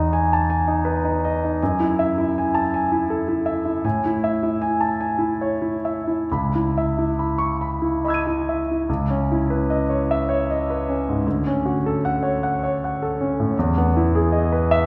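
This is an impressionist classical solo piano piece in C# minor, with a mysterious, wistful mood, taken from a longer work. It moves in a gentle 3/4 at roughly 66-82 BPM, with a freely breathing rubato that keeps the pulse elastic. A clear concert grand carries everything alone, ranging from C#2 up to D#7, its tone natural and its deep bass ringing with long sustain. The harmony drifts through lush extended chords, opening on Emaj7 and passing through F#m9, Amaj7 and C#m9 before turning to Dmaj7 at 11.3 seconds and settling back on Emaj7. A wet concert hall reverb with a 2.3-second decay surrounds the instrument, so the room is heard from further back even though the piano itself sits up front. The tuning rests slightly below standard, at A4 = 439 Hz.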